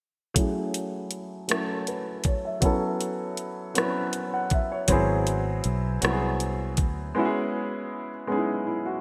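Slow six-eight R&B with a sultry, yearning mood, this short cut from a longer piece opens on a grand piano playing accompaniment, its natural, short-sustained tone run through a low-pass filter that sweeps across the whole passage. A smooth electronic drum kit enters at 0.4 seconds with a knocking kick, metallic hi-hats and rim clicks, its tape-warm, produced sound dressed in gated reverb. A fingered electric bass appears only briefly, from 4.9 to 7.1 seconds, dark, round and foam-muted, with a direct, amped character. Underneath, the harmony moves from F#m9 through A69 and G#7alt to C#m7. Piano, drums and bass each sit up front, set in a lush hall reverb within a bright, 1980s-style digital production.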